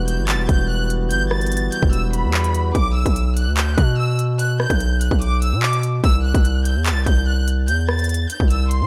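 A distorted 808-style bass dominates this cold, dark drill excerpt, its saturated sine tone carrying a noise layer, a fast attack and a heavy, aggressive decay that sits up front through the full 8.9 seconds. The drill drum kit drives a half-time feel at 146 BPM in 4/4, with a hard-clipped kick, crisp hi-hats, handclaps and rim clicks, all electronic and produced yet re-recorded in a large room and placed close to the listener. Above them, a distant studio violin section carries the melody high, between B5 and A6, its lush, bowed ensemble sound colored by vibrato and a delay. A principal-stop pipe organ holds smooth, baroque-voiced chords with a touch of chiff for the opening 2.7 seconds before dropping out. Set in B phrygian, the harmony moves from Emadd9 to B5 and then C, wrapped in a digital ambience.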